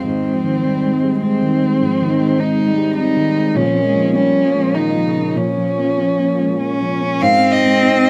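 Close, detailed microphones and light reverb frame this brief, longing fragment of neoclassical piano and strings, moving in a rubato 3/4 at about 101 BPM and tuned to A4 = 441 Hz. A single violin carries the melody with expressive vibrato and portamento, while a smooth, even cello traces a second line in the background, and a dark, woody upright piano with long sustain sits up front as accompaniment over chords moving from Ab to Bbm and back to Ab at 7.2 seconds. Beneath them, a very quiet, glassy FM pad holds ethereal sustained chords with a slow attack and ensemble chorus, adding a reflective haze throughout the 8.1 seconds.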